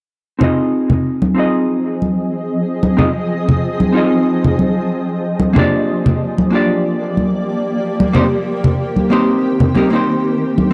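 Warm and wistful, this sunset chillout excerpt pairs a dark, clean hollow-body jazz guitar, picked and filtered with a filter sweep and analog delay, with bright acoustic congas played with soft hands up front, before a shimmering, ethereal pad with chorus and octave-up shimmer enters at 1.6 s to sustain Fm7, Gm7 and Cm7, all captured in a dry, gritty small-room recording with light reverb.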